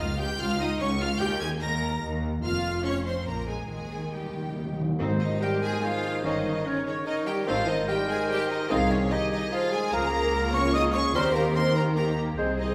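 Heard from further back in a reverberant recital hall, this cheerful, lively passage from a quick classical-period symphonic movement in 3/4 opens on the full string body: a rich violin section carries the melody over a bright second violin line, with violas in the background and warm cellos alongside double basses beneath. Timpani struck with soft mallets add a round fill from 3.7 s, and at 5.0 s the winds join for a fuller passage, with a present clarinet and a background oboe on second lines and a mellow bassoon in the accompaniment, while a hollow flute adds another second line from 5.2 s. A dark, punchy French horn section sustains chords from 5.2 s to the end.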